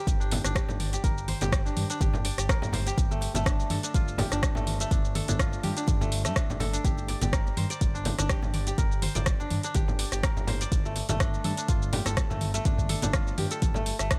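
Hypnotic and driving, this afro house excerpt sets a crisp, fingerpicked kora's ringing arpeggios, touched with tape echo and sidechain pumping, over a dark, gliding sawtooth synth bass with vibrato and portamento, a deep, layered electronic kick, an afro-pop kit of metallic hi-hats, rim click, shaker and toms, and low-tuned congas played with soft hands in the background, all kept dry as the harmony moves between Gm and Dsus4/G.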